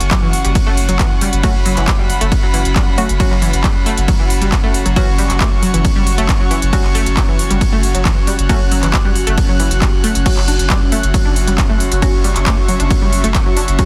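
This dark, hypnotic slice of driving peak-time techno opens on a thick, saturated sine sub bass, overdriven and low-pass filtered, beneath an eerie, warbling FM drone with a metallic, inharmonic edge and an airy, breathy pad that swells in slowly and hangs high above. At 136 BPM in a straight 4/4 over an F#5 chord, a punchy electronic kick leads the mix, with a tape-warm drum kit of smooth hi-hats, handclaps, ride and crash re-recorded in a small room. A round, detuned analog pluck riff with a noise layer arrives at once, colored by tube saturation, cassette tape grit, chorus and dub echo. From 1.4 seconds, a muted, mellow dub chord stab with a filtered sawtooth tone and delay sits in the background. The bass, drone, pad, pluck and stab all pump against the kick, while light reverb and digital ambience frame a dense, heavily limited master in this short excerpt cut from a longer piece.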